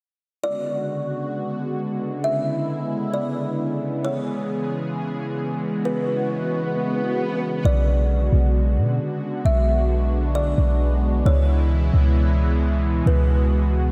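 A half-time hip hop groove in 4/4 at 133 BPM drifts through B dorian, moving between Bm69 and C#m7 with an ethereal, spacious mood. A smooth, detuned analog pad with chorus holds sustained chords while a woody, mellow kalimba with tape echo carries the melody, and the whole mix is soaked in a lush hall reverb for a dreamy feel. An electronic swell appears at 5.8 seconds, and at 7.6 seconds a deep, boomy 808-style bass enters up front in the mix.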